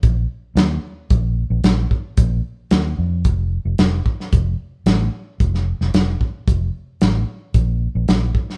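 A straight-eighth soul blues groove in 4/4 at 112 BPM sets a brooding, smoky mood in this short excerpt cut from a longer piece, tuned slightly flat to A4 = 438 Hz. A vintage, foam-muted fingered electric bass sits up front with a round, dark, amped tone, moving between F1 and F2, while an acoustic soul drum kit of hi-hat, punchy kick and medium-tuned snare sounds smooth and close, as in a small room. The band plays live together in one room with light reverb, the drums running to 8.6 seconds and the bass stopping just before at 8.3 seconds.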